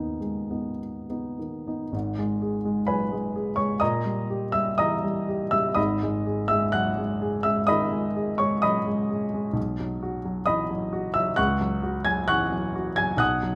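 Flexible rubato pulls the uneven beats of this 64 BPM, 4/4 romantic character piece for solo piano in G# minor, giving its fragment of a longer work a passionate, stormy mood. The grand piano is up front and intimate, spanning G#1 to G#6, with short sustain and audible action noise caught by close, detailed microphones. Its harmony moves from G#m through D#/A# and back, then to B and F#5/C#, framed by a moderate recital-hall reverb.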